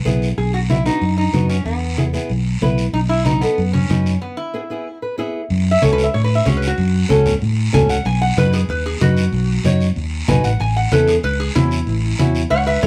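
A straight 4/4 cumbia beat at 188 BPM drives this joyful, festive stretch of a longer piece. Low-tuned congas with a thick-skinned, band-limited vintage tone sit in the background alongside a raspy guiro, while a round, punchy fingered electric bass sits up front and anchors the groove. Up front, a boxy flamenco guitar is fingerpicked with audible finger squeak, and a nasal, metallic lap resonator guitar enters at 0.4 seconds to carry the melody, moving through B, E, F#m and A. A break arrives at 4.2 seconds, capped by a short nylon-string guitar fill. From 5.5 seconds the resonator guitar, played with fingerpicks and a steel bar, takes a mellow slide solo to the end. The band sounds as if it is playing live in one room, with moderate studio reverb.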